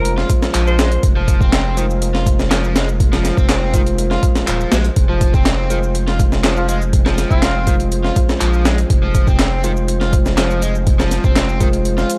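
A compressed, gritty sampler-style breakbeat kit with a thumpy kick and high-tuned snare drives this energetic, swaggering 122 BPM breakbeat cut in F minor, over a deep saturated sub bass, a double-tracked overdriven electric guitar riff with spring reverb and tape echo, clean tine electric piano stabs through a combo amp, a very quiet, thick tonewheel organ holding sustained chords through a slow rotary speaker, layered electronic shaker and handclaps in the background, and a distant, roomy alto saxophone whose AM-radio-tinged melody sounds only at 0.0 and again at 6.6 seconds, within a dry mix dusted with vinyl crackle.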